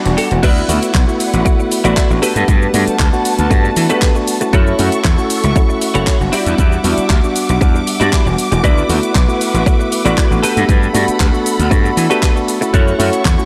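Nu-disco at 117 BPM in a straight 4/4, this sunny, groovy cut from a longer piece sits in D major, with chords moving from D69 through Gmaj9, F#m7 and Em9. A brief break opens the clip before the drop lands at 0.4 seconds, when the punchy electronic kick enters up front, tape-warm and re-recorded in a large room. The house drum kit adds crash cymbal, handclaps, hi-hat and shaker with the same layered, roomy character, while the overdriven slap bass, bright and gritty from transformer saturation, sits prominently beneath. A clean, compressed electric guitar plays a picked riff through ensemble chorus and analog delay, and a worn, slightly out-of-tune tine electric piano supplies accompaniment, its delay and sidechain pumping giving it a breathing motion. Lush bowed strings with smooth vibrato hold sustained chords behind them, also carrying sidechain pumping, and the whole sits in light reverb with a dry, gritty hardware sound.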